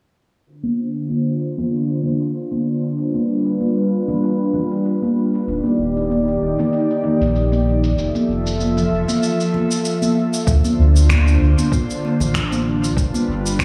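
An airy, breathy pad with chorus and shimmer reverb opens this relaxed sunset chillout excerpt at 0.5 seconds, alongside gritty, tape-warm shaker and finger snaps and bright, hard-hand congas that both trail dub echoes. A filter sweep runs over the pad and drums until 10.5 seconds, while a deep, round sub bass arrives up front at 5.5 seconds, and a thumpy, compressed kick drum lands at 10.5 seconds. The whole swung groove sits in an echo-heavy, low-passed mix with a moderate plate-reverb glow.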